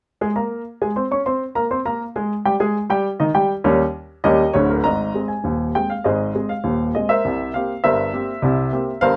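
Light reverb surrounds a present, up-front baby grand piano in this short excerpt of jaunty, cheerful ragtime. The solo piano starts at 0.2 seconds and ranges from D1 in the bass up to Db6, moving in a straight duple metre. Its warm tone carries an opening phrase that passes through a seventh chord, then a second phrase begins at 4.9 seconds and turns toward another seventh chord before the cut at 9.2 seconds.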